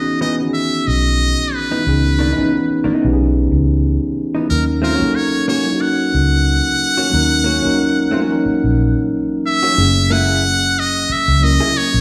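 Bathed in the reverb of a resonant recital hall, this soulful, smooth R&B passage cut from a longer piece sets a buzzy, close-miked trumpet with a metal mute on the melody, with scooped notes and light vibrato, over a mellow tine electric piano, a dark, compressed hollow-body jazz guitar on a second line, and a round, foam-muted fingered electric bass entering at 0.9 seconds, before the harmony shifts to F#9 at 9.8 seconds.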